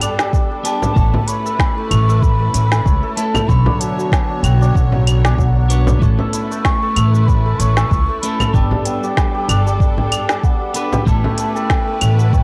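Peaceful and warm, this organic downtempo groove in A mixolydian moves at 95 BPM with a gentle 16th-note swing, as a clean picked electric guitar with spring reverb, a lush, distant bowed string section and a shimmering, ringing santur with tape echo weave arpeggios and sustained chords over G, A and Bmadd9. An up-front deep electronic kick enters at 0.3 seconds beneath a tape-toned electronic kit of woody snare, smooth hats, claves and shaker, joined by a hard-handed acoustic frame drum and, from 1.0 seconds, a thumpy, pizzicato upright bass whose pumping breathes with the guitar and strings. Above it all floats a mellow, airy bansuri with a chiffy attack, unsteady vibrato, 12-bit sampler grit and tape echo, set in a dry, gritty cassette-flavored sound with studio reverb.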